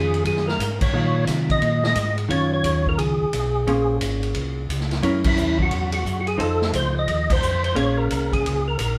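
A percussive tonewheel organ sits up front with the melody, its fat, key-clicking tone turned by a slow rotary speaker and chorus vibrato, over a mellow, round organ bass line that also spins through a slow rotary. This is a smoky, bluesy soul jazz organ trio excerpt in Bb minor at a brisk 176 BPM, swinging as a dark, compressed hollow-body electric guitar comps beneath and a punchy, natural-sounding big-room drum kit drives with ride, hi-hat, snare, kick and crash. The band plays live together in one room with a wet studio reverb, hitting ensemble accents at 0.8, 5.2 and 7.2 seconds as the chords move from Ebm9 to Bbm9, then through Gb7 and F7 back to Bbm9.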